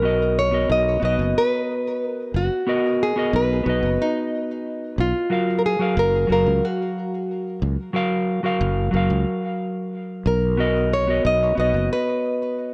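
A fingerpicked nylon-string guitar carries the melody up front, its fresh strings giving a small, warm acoustic voice touched by digital delay. Beneath it, a dark, clean electric guitar plays fingered accompaniment across a broader range, also treated with digital delay and sitting close in the mix. A sustaining fretless electric bass adds a growly, direct low end until 11.9 s, while both guitars continue to the close at 12.7 s. The harmony drifts from Bmaj7 to F#maj7 at 5.3 s and back to Bmaj7, giving this sunset chillout passage a relaxed, warm glow in a straight 4/4 feel. Light reverb and small room ambience frame the whole fragment, which is cut from a longer piece.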